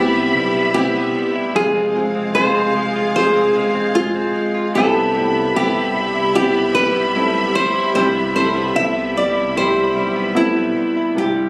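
Hopeful and emotional, this fragment of a pop ballad in C major moves at a straight 75 BPM in 4/4, drifting from Cmaj7 to Fm and back to Cmaj7. A bright, full-bodied nylon-string guitar carries the fingerpicked melody up front, complete with finger squeak, while a natural-sounding baby grand piano with short sustain plays the accompaniment and a studio string section holds intimate bowed chords with vibrato and a smooth top. Beneath them, a scooped, clean electric guitar recorded direct picks delayed arpeggios in the background, and a glossy, retro chorused synth bass hums mellow low notes until 10.7 s, the whole captured on a phone in the room with club reverb and compression.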